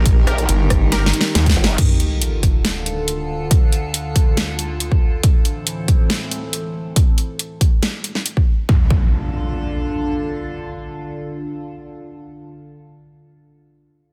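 A snarling distorted saw bass opens this menacing, chaotic heavy wobble dubstep excerpt, its detuned sawtooth tone overdriven and carved by a moving notch. A growl bass joins almost at once, wobbling through a formant filter with bright, saturated chorus. Both basses sit up front over a half-time 139 BPM groove in 4/4 and D minor, driven by a punchy electronic kick re-recorded in a large room and a layered kit with a huge snare, metallic hats, rim clicks and crashes, which plays a drum fill during the opening drop. Beneath them an evolving wavetable pad morphs through sustained chords with phaser, chorus and sidechain pumping, while a lush, ring-modulated unison pluck flickers briefly in the background through cassette tape and tape echo. At 1.8 seconds a sub drop and impact arrive as the harmony moves from Eb to D minor, then to A minor, and the kit carries on until about 8.3 seconds. 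A second sub drop and impact returns on D minor near the close, and the dense, heavily limited master keeps the sound close and dry.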